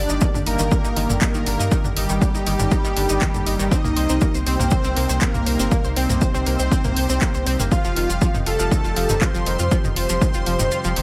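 A lightly reverberant mix carries this cinematic, driving excerpt of melodic techno, where an overdriven, punchy electronic kick sits up front under a layered house kit of handclaps, hi-hat and toms, grainy maracas and a deep, round analog bass, while a fat, nasal analog lead with chorus, tape colour and dub echo sings over a soft supersaw line with 12-bit grit, a warbling pad of sustained chords and bright, detuned pluck arpeggios, all moving through Ebmaj7/G, Cm7 and Fsus2 before the kick drops out at 10.7 seconds.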